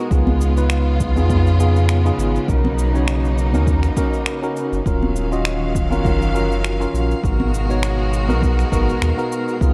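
Sunset chillout at 101 BPM in a relaxed, warm, swung 4/4, built on a round, deep sub bass up front and a clean tine electric piano with tape echo, over a rich bowed string section with vibrato moving through Db7, Bmaj9, Ebm9 and Abm9. A punchy, layered electronic kick drives the groove alongside an electronic shaker and finger snaps, while acoustic congas sit in the background. At 5.7 s a glassy texture of drifting harmonics with chorus enters in the background, the whole excerpt set in a light digital ambience.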